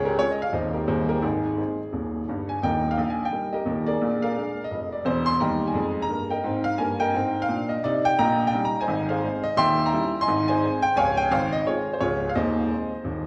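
A reverberant recital-hall sound surrounds this short cut from a longer piece, the 1.5-second reverb lending the room a church or concert-hall glow. It is swinging, exuberant stride jazz at 172 BPM in 4/4, with a 60% swing on the eighth notes and a tuning reference of A4 = 443 Hz. A solo upright piano carries everything from 0.0 to 13.3 seconds, its tone clear, woody and smooth with a vintage character and long sustain, sitting up front in the mix. The playing spans from a deep Db1 to C6, opening in Eb major over Db, Ab/Eb and Ab before a new passage at 2.6 seconds settles on Eb and Bb7. From 8.2 seconds the music moves toward Ab major, passing through Eb7/Bb, Eb7b9 and a lush Dbmaj7 before coming to rest on Ab/Eb.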